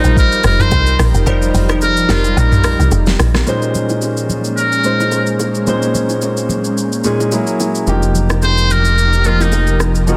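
Soulful and deep, this amapiano excerpt at 109 BPM in Bb dorian, with a lightly swung 16th feel, sets a buzzy, muted trumpet melody with delay over a warm concert grand piano, an ethereal, airy pad pumping in the background, a woody log drum bass that drops out at 3.4 s, a smooth R&B drum kit with a fat, softly clipped snare, very quiet bongos and congas, a brief crystalline pluck stab at 1.3 s, and a thick sawtooth analog bass arriving at 7.9 s, in a dense, heavily limited modern mix.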